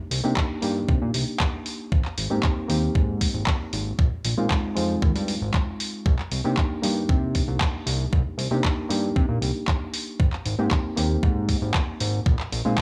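A bright, reedy electric piano opens this sleek, cosmic nu-disco excerpt, lightly overdriven and slightly out of tune through dub echo, before a fat, saturated analog bass with a filter sweep, a pop kit of handclaps and warm hats, and a thumpy sampler-style kick recorded in a large room join up front over a small digital room ambience as Cm9, Abmaj7 and Bb9sus4 chords cycle.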